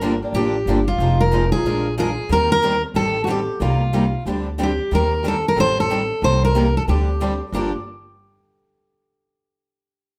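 A wet studio reverb surrounds this brief cut from a longer piece, with the band heard playing live together in one room. It is swinging, virtuosic acoustic string swing in the jazz manouche style, and all four parts play throughout, from 0.0 to 7.7 seconds. A full-bodied, jumbo-sized steel-string guitar with fresh strings carries the picked melody up front. Beneath it, a boxy swing-style guitar and a softer auditorium-bodied steel-string guitar share the picked accompaniment. A woody, thumpy upright bass with dark gut strings is plucked pizzicato and sits up front. The harmony moves from Gm7 through Fm7 and Bb7 into a repeated turn of Eb6, Am7b5, Cm7 and D7sus4, landing back on Gm7 at 7.5 seconds.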